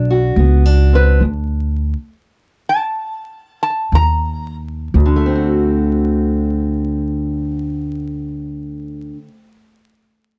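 A dry, close 1970s-style studio sound with vinyl crackle frames this soulful, laid-back snippet of acoustic country blues in D mixolydian, swinging slowly at 58-73 BPM and easing down through its opening half, with a stop along the way. A boxy, dark parlour steel-string guitar fingerpicks the accompaniment over a woody, thumpy pizzicato upright bass, both up front. From 1.0 to 4.6 s, a metallic, nasal resonator slide guitar, played with fingerpicks and a steel bar, takes a short melodic solo colored by slapback echo.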